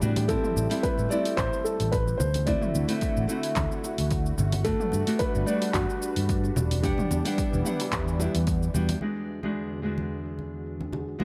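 This relaxed sunset chillout excerpt at 110 BPM opens with an up-front, fingerpicked nylon-string guitar over a lush, detuned unison pad colored by chorus and phaser, a punchy fingered electric bass, an overdriven deep house kit of handclaps, hi-hat, shaker and filtered toms, and very quiet congas and bongos. From 0.3 seconds a dark, mellow grand piano with digital delay carries the melody over a punchy overdriven electronic kick, moving through Am9, D9, Gmaj7 and Em7 with a lazy 16th-note swing. The bass drops out at 8.9 seconds, and from 9.0 seconds a filter sweep on an analog synth pad sounds over an E9 chord, all set in light reverb.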